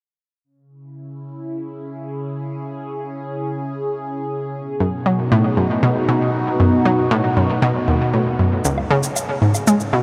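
Hypnotic and cosmic, this excerpt of ambient, sequencer-driven space music opens at 0.4 seconds with a swirling, warbling analog pad fading in on sustained chords, its detuned sawtooth tone treated with phaser and chorus as it moves from C# minor to B. At 4.8 seconds a round, bright analog pluck riff sits up front with a fast attack, chorus and analog delay. At 8.6 seconds, as the chords return to C# minor, a dry, tape-warm shaker and woodblock enter through an analog delay, and a huge 7.5-second reverb fills a vast, echoing space.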